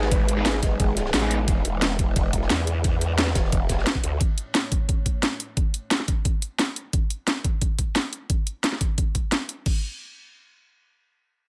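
Dark technical drum and bass at 176 BPM with a futuristic, dark mood, this excerpt opens on a moody, detuned analog pad under a filter sweep, a soft felt-muted upright piano playing brief arpeggios with audible action noise and dub echo, a growling, wobbling bass with overdrive and chorus up front, a very quiet downlifter and, from 0.4 seconds, faint distorted fuzz guitar stabs. Driving the track from 0.1 to 9.7 seconds are an overdriven electronic kick with a knocking punch and a layered drum and bass kit with a cracking snare and bright hats, while a gritty, rolled-off breakbeat kit with dark cymbals and a high-tuned snare sits in the background until 4.1 seconds. The pad, piano and bass all pump against the sidechain as the chords move from G#m to E7 and A before the harmony drops out at 6.9 seconds, all in a dry mix with little reverb.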